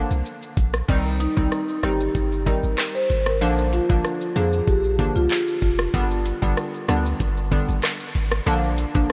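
Hypnotic and bouncy, this dancehall excerpt sets a glassy, chorused wavetable pluck up front over a deep, punchy sine sub bass with a pitch-drop attack, while an electronic island pop kit knocks out kick, metallic hi-hats, handclaps, rim clicks, shaker and crash cymbal. From 1.2 to 5.3 s a close-miked marimba played with medium mallets carries the melody, its full tone touched with delay. The whole mix is soaked in a huge ambient reverb with a dreamy, softened top end, as the harmony moves between Bb, Cm and G.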